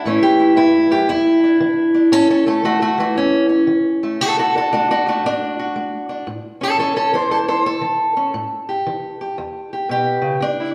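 Set in a wet recital-hall reverb, this short excerpt of gritty, laid-back acoustic country blues at 116 BPM in A mixolydian features a dark, boxy fingerpicked parlour steel-string acoustic guitar, up front and swung, moving from A7 through Dsus2/E into A, D and back to A7 over 10.7 seconds.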